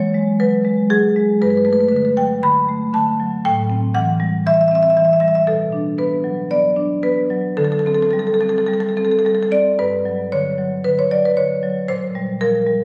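A solo marimba played with medium mallets, its woody rosewood tone up front, ranges from G2 to B5 in this playful, flowing contemporary classical excerpt, moving rubato through lush chords like Gmaj9, Am7 and D7sus4 before shifting into a new section at 9.8 seconds that closes on Bbsus2, all bathed in a wet recital-hall reverb and recorded on a phone in the room.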